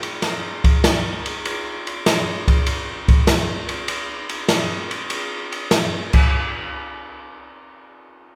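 Jazz with a soulful, smoky mood and a swung 4/4 feel, this cut from a longer piece features an up-front open acoustic drum kit of dark cymbals, medium-tuned snare, boomy kick, hi-hat, ride and crash that plays from the start until 6.2 seconds, its airy, polished sound carried by a moderate hall-like reverb.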